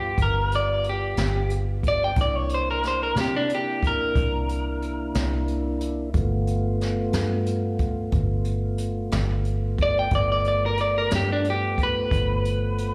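A slow 12/8 blues with a straight feel, this gritty, rollicking cut opens on a dark, foam-muted fingered bass sitting up front and a clean tonewheel organ holding sustained chords through a slow rotary speaker, with a brushed drum kit, its high-tuned snare and boomy kick, joining at 0.2 seconds. Over the top, an electric guitar just on the edge of break-up takes a picked, compressed solo from the start, its tone coloured by spring reverb and slapback echo, moving from G7 through C9 to G9. The sound is that of a live club gig heard through the venue's PA, taken from a longer performance.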